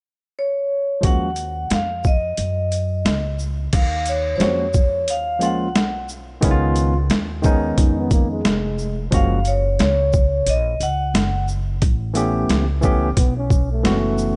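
A mellow, nocturnal jazz-hop excerpt opens with a metallic, ringing vibraphone carrying the melody alone, struck with medium hard mallets and shimmering with a slow motor vibrato in a boxy small room. At 1.0 s the rest of the band arrives: a bright, barky tine electric piano with light overdrive comps up front, a woody pizzicato upright bass anchors the low end, and a gritty, pitched-down boom bap drum kit with a thumpy kick and high-tuned snare sits overdriven and compressed at the forefront. The groove has a relaxed, swung 4/4 hip hop feel as the harmony drifts through lush minor ninth and eleventh chords toward Gb and an A9. A dark, breathy trombone slips in at 7.8 s and again at 13.2 s with a soft attack, scooped notes and light vibrato, its whispered, intimate jazz tone adding a second line. Light reverb and gentle studio ambience frame the mix, and the treble is softly rolled off for a hazy, late-night character.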